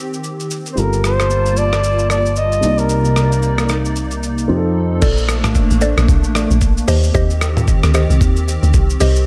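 A dry, close-sounding excerpt of relaxed amapiano at 113 BPM in swung 4/4: a dusty, gritty sampler-style drum kit with a thumpy kick runs throughout beneath a hollow, flute-like pad that pumps with sidechain and shimmers with ensemble chorus and tremolo, while a dark, boxy baby grand piano and a punchy fingered electric bass support a veiled, bucket-muted trumpet melody with scooped notes and tape echo, the trumpet bowing out at 3.9 seconds ahead of a brief silent gap at 4.5 seconds, after which the drop at 5.0 seconds brings a deep, round log drum bass up front and a woody, mallet-like synth pluck playing stabs through chorus, phaser and tape echo over chords moving from Gm9 and Cm9 to Bbmaj9.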